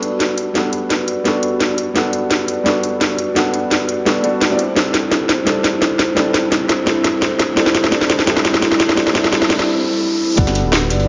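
Uplifting and lush, this liquid drum and bass build-up at 171 BPM in G major opens with a felt-muted upright piano, soft and intimate with audible action noise, alongside a ringing, background vibraphone under a filter sweep, both filtered and touched with digital delay over Gmaj7 moving to C69. A crisp, cracking garage kit sits up front playing a drum fill until 9.7 seconds, while a very quiet riser enters underneath at 9.2 seconds. At 10.4 seconds the chords return to Gmaj7 as a smooth sawtooth synth bass with vibrato, a tight electronic kick and a gritty, saturated breakbeat kit arrive, all inside a huge ambient reverb with a dark top end.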